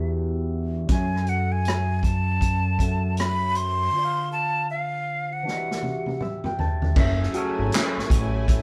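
A roomy, live-in-one-room sound frames this sultry, soulful neo-soul R&B excerpt at 79 BPM with a swung sixteenth feel, where a breathy, close-miked flute carries the melody until 6.2 seconds over a barky, gritty electric piano with phaser and a fat, sawtooth-edged analog bass, an acoustic drum kit with dark cymbals and bundle sticks enters at 0.9 seconds and plays a fill in the second half of the break, and lush, bowed strings arrive at 7.0 seconds on an F#m9 chord.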